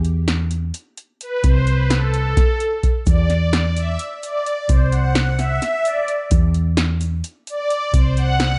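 A digital ambience with a rolled-off top end frames this short excerpt of driving, tense progressive instrumental band music in 7/8 at 258 BPM counted in eighths, moving through Amadd9/C, Dsus2/E and C. An up-front electro analog drum machine with a deep kick, punchy snare and metallic, tape-warm hats plays alongside a dark, round, hollow-body fretless electric bass sweetened by lush chorus, while from 1.2 s a bright, detuned sawtooth pad with a soft attack swirls and evolves through phaser and chorus as the lead voice. A grainy acoustic egg shaker, very quiet and set in a small room, joins at 3.1 s.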